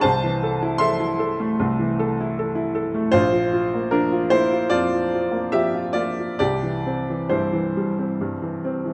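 Rubato phrasing in 4/4 drifts between 66 and 78 BPM in this brooding, passionate romantic character piece for solo piano, cut from a longer work and tuned to A4 = 439 Hz. A bright, woody upright piano sits up front, ranging from Bb1 to C6 as the harmony moves from Am/C to Bb at 3.1 seconds and C at 6.4 seconds. A moderate recital hall reverb gives the open tone some air.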